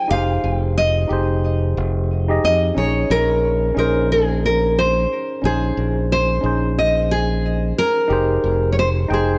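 A fingerpicked nylon-string guitar sits up front and carries the melody, its bright, full-bodied classical tone marked by audible finger squeak and trailed by tape echo. This short sunset chillout clip, cut from a longer piece, moves at a relaxed 90 BPM in 4/4 with a 16th-note swing, and its Bb dorian colour gives it a wistful, easygoing mood. Beneath the guitar, a tine electric piano supplies accompaniment through a combo amp, sounding clean yet worn and slightly out of tune. A modern fingered electric bass enters at 0.1 seconds, punchy and direct, with tube saturation adding grit to its low line. The harmony moves from Fm7 to Bbm11 at 2.8 seconds and back to Fm7 at 8.1 seconds. The whole recording sits in a moderate concert-hall reverb and carries the warbling pitch drift of old cassette tape.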